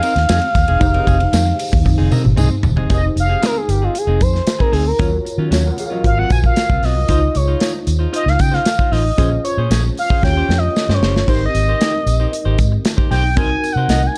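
A smooth, sawtooth synth lead with a soft attack, vibrato and a filter sweep takes an expressive solo from 2.9 seconds in this nocturnal, urban slice of polished 1980s jazz-funk pop, moving at 115 BPM in F minor through lush chords such as Fm7, Dbmaj9 and Eb13. A round, foam-muted fingered bass sits up front beside a punchy studio drum kit with bright cymbals, which plays fills at 1.9 and 10.2 seconds. Behind them, a worn, slightly out-of-tune tine electric piano with light overdrive and ensemble chorus, a clean picked guitar riff and a distant, jingly tambourine fill out a dark, warm small-room mix.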